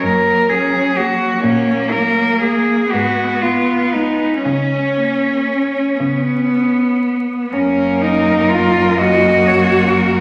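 A rich, vibrato-laden cello sings the melody up front over a dark, gliding second cello line, while two more bowed cellos supply soft-attack accompaniment and a low bass in this elegiac, yearning classical fragment in F# major, moving in a rubato 6/8 at 38-43 BPM through a scoring-stage reverb with vinyl crackle, its harmony returning to F# as a new section begins at 7.5 seconds.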